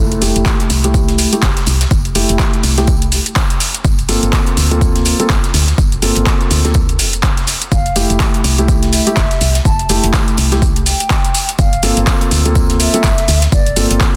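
A felt-muted upright piano plays dark, thick-felt chord stabs through a filter sweep, pumping against the sidechain and trailing digital delay, in this sunny, soulful, swung deep house cut taken from a longer piece. A woody, round FM bass and a punchy, overdriven electronic kick anchor the groove, while an up-front house kit adds metallic hats, handclaps and shaker, and a very quiet, dry reggae kit slips in a high-tuned snare and tambourine. At 7.7 seconds an airy, hollow concert flute enters with vibrato and 12-bit sampler grit, all set in a small room under a dense, heavily limited master.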